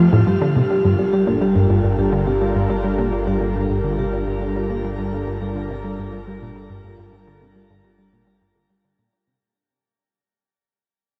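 Drenched in a long, shimmering reverb with a dark, warm production, this short excerpt of hypnotic, cosmic space music moves at 105 BPM in a straight 4/4 in G minor, its slightly flat tuning adding to the otherworldly air. A tight, driving sequenced synth sits up front with a detuned sawtooth riff, its plucky filtered notes carried on chorus and tape echo. Beside it, a sweeping resonant pad holds airy, evolving chords with a bright noise layer and slow filter swells, settling on a Gm7 from 0.3 seconds. A vibraphone played with soft mallets adds mellow, ringing arpeggios on G4, coloured by slow motor vibrato and tape echo, until it drops out at 4.7 seconds. Underneath, a fat, saturated analog bass sits low in the mix on a wave-folded low G as the whole passage gradually fades out toward 9.4 seconds.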